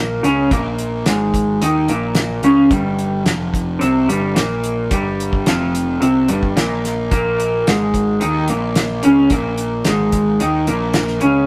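Psychedelic rock with a kaleidoscopic, trippy mood, cut from a longer piece, where an up-front, dark, slightly broken-up electric guitar through a small old amp plays a lo-fi, compressed riff over a round, fuzzy overdriven picked bass and a dry, airy 70s drum kit with a fat snare and tight kick, all set in a moderate stone room reverb with a rough rehearsal-room sound as the chords move from Absus24 to Fsus24 at 2.7 seconds and back at 7.1 seconds.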